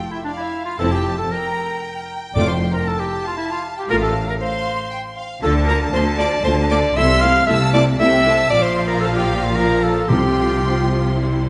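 This is a quick, spirited classical-period orchestral movement in triple time, graceful and lively in feel, cut from a longer piece. A violin section carries the melody high in its range with an expressive, vibrato-rich, close-up sound, while a second violin section sits further back, smooth and even, tracing a second line. A bright, up-front solo clarinet adds its own second line through the middle register and stands out clearly in the blend. From 0.8 seconds a lush viola section fills in the accompaniment, and the clear, focused cellos join the double basses, whose smooth top rounds out a rich bass foundation. Soft-mallet timpani with a round calf-head tone sound briefly in the background at 2.4 seconds and again near 10.1 seconds, and the whole ensemble sits in a moderate scoring-stage reverb as the harmony moves toward a suspended close.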